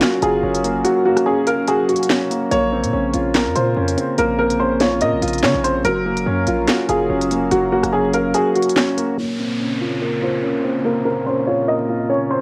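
A woody, slightly detuned upright piano carries the melody through tape echo in this ominous, tense drill excerpt, set in Bb minor at 144 BPM with a half-time feel, while a soft felt-muted piano sits up front beneath it and a smooth, chorused analog pad holds sustained chords in the background over Gbmaj7 and Bbmadd9. The crisp, electronic drill kit with sharp snare, handclaps and rim clicks carries 12-bit sampler grit and cassette tape color, joined by a punchy, heavy 808-style bass from 0.2 to 8.3 seconds, with the kick dropping out briefly along the way. The drums stop at 9.1 seconds, and at 9.2 seconds an electronic downlifter enters under a filter sweep, all wrapped in a home-cassette sound with vinyl crackle.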